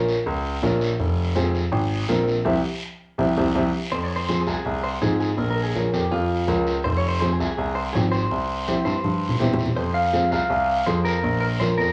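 Cumbia with a danceable, driving feel, this short cut opens on a woody upright piano accompanying in the middle register over a polished grand piano carrying the bass line up front, while a raspy, distant guiro and soft-handed, ringing congas sit back in the mix. A band accent lands at 2.5 seconds, and at 3.9 seconds a clean, twangy electric guitar takes the melody, its picked, compressed tone bathed in spring and plate reverb. A drum fill at 9.0 seconds pushes the groove onward over a minor-key progression in a light studio space.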